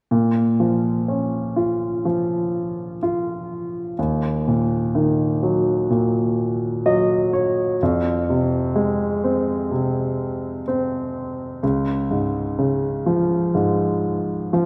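A clear grand piano carries this short pop fragment on its own, sitting up front with an intimate, natural tone and audible action noise under its short-sustained notes. The mood is heartbroken and emotional, moving at a slow 63 BPM in a straight 4/4 feel in Bb minor, tuned to A4 = 435 Hz. Playing an accompaniment role across a range from Db2 to Eb5, the piano moves through Bbm, Ebm, Fm and Db, with a brief fill between 6.4 and 7.8 seconds leading into the Fm chord. A wet, lush hall reverb with a 2.4-second decay surrounds the instrument, giving the rough home-demo mix a spacious glow. The passage runs from 0.1 to 14.7 seconds and is cut from a longer piece.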